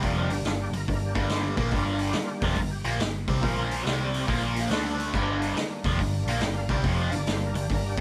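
An overdriven tonewheel organ takes the lead throughout this brooding, heavy excerpt of blues rock and southern rock, its thick, gritty sustained chords carrying key click, percussive second-harmonic attack, chorus vibrato and a slow rotary speaker. Underneath, a bright, double-tracked cranked stack guitar drives an overdriven, phased riff up front, a dark, round foam-muted picked bass holds the low end, and a vintage kit with dark cymbals, a medium-tuned snare, a tight kick and a saturated, rolled-off top pushes a swung 141 BPM groove in G minor. The trio and organ play live in one room with moderate studio reverb, moving from G minor through Bb5, C5, Bb5 again and D5 before settling back on G minor at 5.1 seconds.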